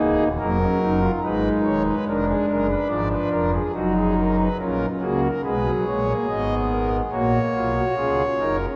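A solo pipe organ on foundation stops opens the recording, its thick, romantically voiced sound placed up front within a wet church reverb that lingers for several seconds. This is a classical, baroque-style four-part fugue with an elegant, stately mood, moving at a measured 71 BPM in 3/4 with a straight feel. The organ spans a broad compass, from a deep C#1 in the bass to D#5 at the top. The harmony begins on D# minor and passes through G# minor and an A#7 over E# before settling on D# minor over F#. A second section arrives at 4.6 seconds, moving from A# minor through G# minor to F# over A#. This short passage, cut from a longer piece, runs just under nine seconds.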